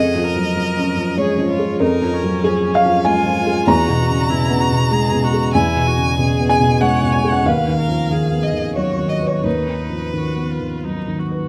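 Hopeful and tender, this neoclassical fragment for piano and strings drifts in a rubato 3/4 at around 85-98 BPM, tuned slightly low at A4 = 439 Hz, with harmony moving from C#/E# to E to B/D#. A felt-muted upright piano sits up front, soft, mellow and dark, its thick felt and audible action noise giving an intimate closeness, while a single clear viola adds smooth, even bowed accompaniment with vibrato. Above them a lone violin carries the melody in a rich, focused bowed tone with vibrato and a touch of tape echo, stopping at 11.2 seconds just before the others finish, all within light reverb and studio ambience in a rough home demo mix.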